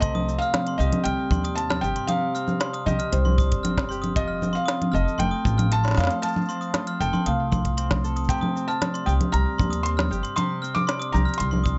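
A felt-muted upright piano carries the melody in this wistful, delicate folktronica excerpt, its soft, intimate tone touched with audible action noise and trailed by delay. Alongside it, a glockenspiel struck with brass mallets plays a sparkling, bell-like second line, also echoed by delay, while a Celtic harp rings out bright fingerpicked arpeggios. Beneath them sits a warbly, lo-fi tape-like pad of detuned, slow-attack chords, nostalgic and mellow in the background with chorus, phaser and its own reverb, moving from Cmadd9 to F and back in C dorian. An up-front pizzicato upright bass gives a thumpy, woody low end with tube saturation, and a dark, tight kick plays with brushes. An organic electronic kit adds congas, crisp hi-hat, shaker and a woody, overdriven snare at a steady, straight 116 BPM in 4/4, all within a light reverb and a gently rolled-off top end.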